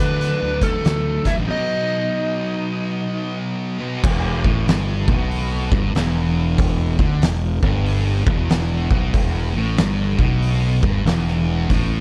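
Blues rock power trio with a southern rock edge, this brooding, gritty swung clip opens with a dark slide guitar melody and a nasal parked-wah lead line that both stop at 3.4 seconds, while a double-tracked thick fuzz guitar riff, a growly fuzz fingered bass and an oversized low-tuned drum kit with a boomy kick, fat snare and pumping room sound drive on, dry and up front, through a break into an E minor groove.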